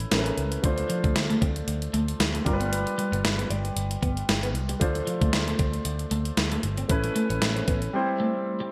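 A polished grand piano with subtle chorus opens this urgent, dramatic excerpt of 1980s-style pop at 115 BPM in D dorian with a light sixteenth-note swing, joined from the start by a dark, foam-muted picked bass and an up-front, thumpy 12-bit drum machine with gated reverb. At 0.8 seconds a bright, twangy twelve-string electric guitar enters in the background with chorus and delay, playing a riff over chords that move from Aadd9 through Dm7 and G7. The bass and drums stop at 7.9 seconds, leaving the long-sustaining piano and the guitar under a glossy digital production and plate reverb.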